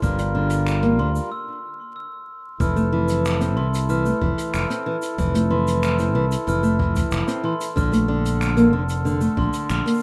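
A fingerpicked nylon-string guitar plays arpeggios over sustained chords from a reedy, close-miked accordion with a touch of vintage sampler grit, while a soft, bell-like glockenspiel played with rubber mallets traces a high second line through digital delay in this pastoral folktronica excerpt in F major at 93 BPM. A bright, punchy fingered electric bass sits up front beside a boomy kick and a warm brush kit with finger snaps, hi-hat and shaker, and the harmony moves from Gm7 through a brief break at 1.3 seconds before settling on Fmaj7 and then Bbmaj7. Light small-room reverb, vinyl crackle and a rough home-demo mix give this short cut from a longer piece a warm, homespun character.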